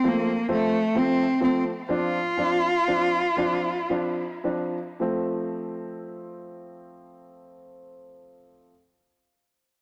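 A single bowed cello with a rich, smooth vibrato carries the melody up front over a clear concert grand piano in this tender, heartfelt pop excerpt in a slow 6/8, the cello's line trailed by tape echo as the pace slows through the opening 5.0 seconds, while the harmony moves from F to Dm7 at 1.9 s. The cello stops at 3.9 s, leaving the piano's open, short-sustained accompaniment with its deep bass to return to F at 5.0 s and carry on until 8.7 s. The sound is blown-out and overdriven, set in a small room with light reverb.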